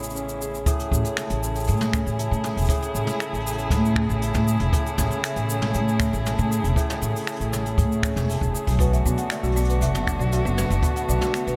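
A woody, pizzicato upright bass sits up front in this delicate, intimate folktronica fragment, holding down the low end in a straight 4/4 feel. Around it, a hammered dulcimer spins mellow, shimmering arpeggios through tape echo, while a string quartet, one player per line, sustains soft-attack chords with vibrato, portamento and a smooth, expressive top. A jazz brush kit adds finger snaps, hi-hat, shaker and toms, and a boomy acoustic kick enters at 0.7 seconds. At 8.8 seconds the harmony moves from Amaj7 to Bm7 as a dry, rustic marimba with hardwood bars comes in on a second line, also carrying tape echo. The recording has a natural small-room ambience with light reverb, giving the whole a close chamber intimacy.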